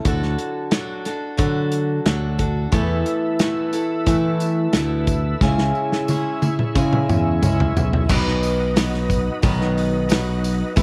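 Lightly reverberant studio sound frames this nostalgic, hopeful folk rock and heartland rock excerpt at 90 BPM, where up-front picked steel-string acoustic guitar, a growly fingered electric bass and a natural country drum kit with dark cymbals and a punchy kick move through D, Esus4 and C#m, joined at 2.7 s by a jingly tambourine in the background and at 2.8 s by smooth tonewheel organ chords turning through a slow rotary speaker with chorus vibrato, before a drum fill from 5.4 s leads into a B chord at 8.1 s.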